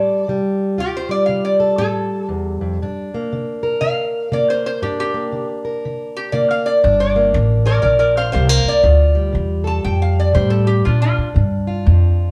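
Captured live in one room and bathed in a lush studio reverb, this mournful, smoky fragment of acoustic country blues swings gently in four. A metallic, nasal lap resonator guitar carries the slide melody up front, played with fingerpicks and falling silent at 11.3 seconds, over a boxy, fingerpicked parlour-style steel-string acoustic guitar. A woody, thumpy pizzicato upright bass joins at 6.8 seconds as the chords move from Dm through Gm and back before landing on Bb.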